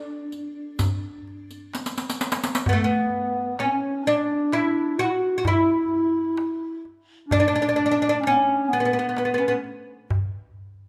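A woody, fretless oud carries the melody up front in this passionate Arabic maqam ensemble fragment in D maqam ajam, moving at 129 BPM in a straight 10/8 over a large clay-shell darbuka and a dry, dark-jingled riq that drops out after a drum fill ending at 2.7 seconds, when a whispered, lightly vibratoed clarinet with scooped notes joins as a second line, all set in a moderate recital hall reverb.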